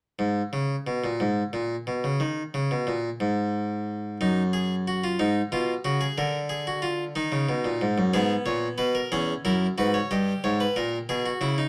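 A serious, contemplative baroque-style three-part fugue in G# minor for solo harpsichord, moving at a stately 61 BPM in 6/8 from 0.2 to 11.7 seconds. The close-miked harpsichord sounds nasal, bright and up front and spans a low E2 to D#5, set in a moderate studio reverb and colored by the warbling pitch drift of worn cassette tape in this short cut from a longer piece.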